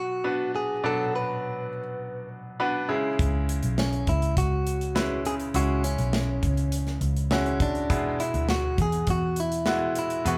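Captured as a band playing live in one room with a moderate large studio reverb, this dramatic, bittersweet piano-driven pop excerpt at 102 BPM opens with a clean, compressed, direct-recorded electric guitar carrying the melody over a brilliant, intimate baby grand piano with audible action noise and short sustain, before a dark, round, foam-muted picked bass and a tight acoustic drum kit with medium-tuned snare join at 3.2 s, moving from Bm to C#m and then E.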